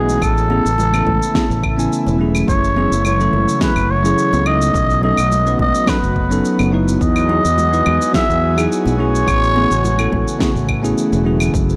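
A veiled, raspy cup-muted trumpet with analog delay leads this relaxed, smooth sunset chillout piece, carrying the melody over a bell-like tine electric piano, an airy, breathy pad roughened by chorus and vintage 12-bit sampler grit, and a punchy fretless electric bass thickened by tube saturation and lush chorus, while a punchy layered electronic kick, a fat-snared kit of electronic shaker and claves, and very quiet high-tuned congas under soft hands keep the groove in a dry, gritty recording with light reverb.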